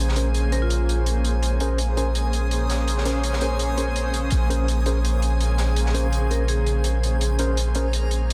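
A dense, heavily limited mix with a small-room ambience frames this raw, nostalgic jungle excerpt, where a crunchy, gritty breakbeat kit with a high-tuned snare rides a deep, up-front sine 808 bass on a held Bbm9 under a blurred granular cloud pad, a reversed, dreamy background texture, dub-echoed electric piano stabs heard through built-in speakers, and brief metallic vibraphone phrases at 0.5 and 6.3 seconds.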